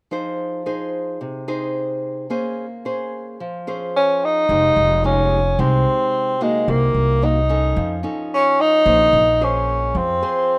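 Smooth and melancholic, this bossa nova fragment in F minor at 110 BPM opens with a small, fingerpicked nylon-string guitar playing alone through chords such as Fm7 and Bbm9 until a roomy, subtoned tenor saxophone with scooped notes takes the melody at 4.0 seconds, joined at 4.5 seconds by a woody, growly pizzicato upright bass, all in a rough home-demo mix with light small-room reverb.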